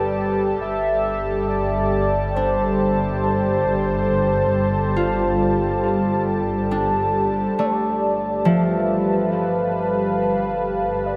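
Bathed in a wet cathedral reverb that opens into a vast, echoing space, this short ambient excerpt drifts at 69 BPM in G mixolydian with a warm, weightless mood. A velvety, wave-folded synth lead with vibrato carries the melody over a detuned, warbling analog pad holding sustained chords up front. A ringing, fingerpicked concert harp plays arpeggios, and a bowed chamber double bass section with a biting edge holds a low G, as the harmony moves from Gadd9 to F/G before settling on G9 at 7.6 seconds.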